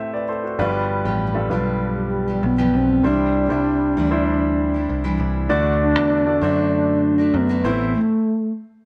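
Warm and uplifting, this pop excerpt moves at 98 BPM in G major, opening on a clear, intimate concert grand piano whose action noise and deep, long-sustaining bass sit up front from the start. A picked steel-string acoustic guitar with a full-bodied jumbo tone plays a riff alongside a punchy, direct electric bass from 0.6 seconds, and at 1.5 seconds a round, warbling horn-like synth lead with soft attack, vibrato and chorus carries the melody over chords moving from Am through G7, Cadd9 and D. The band sounds live in a stone room with moderate reverb, and the instruments stop at 8.0 seconds, leaving only the synth lead to ring on until 8.5 seconds.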